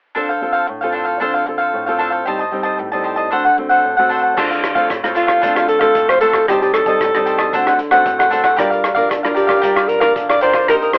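A lightly reverberant home cassette recording with a telephone-like sound carries this lively, yearning passage of samba and choro, cut from a longer piece. A bright, crisp picked cavaquinho sits up front over a full-bodied, fingerpicked classical nylon-string guitar, moving through Dm7, Am7b5, D7 and later Gm7, before a muffled, lo-fi vintage drum kit with a tight kick, hi-hat, rim click and crash cymbal enters at 4.4 seconds. From 5.2 seconds a breathy, whispered alto saxophone takes the solo melody, close-miked and intimate, with vibrato, soft attacks and scooped notes in a jazz style.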